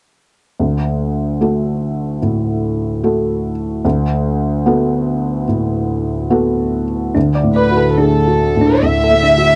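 A dry, close recording with a 1970s studio feel and light reverb frames this fragile, melancholic neoclassical piece for piano and strings, an excerpt moving at a rubato 73 BPM. A felt-muted upright piano, mellow and intimate, sits up front from 0.6 s, accompanying with chords that shift from D to Bm7/D and back. At 7.1 s a round, tine-like synth pluck adds background arpeggios touched with chorus and slapback echo, at 7.2 s a pure bowed double bass enters distantly beneath it, and at 7.5 s a dark chamber violin section takes the melody up front, played sul tasto with soft attack and light vibrato.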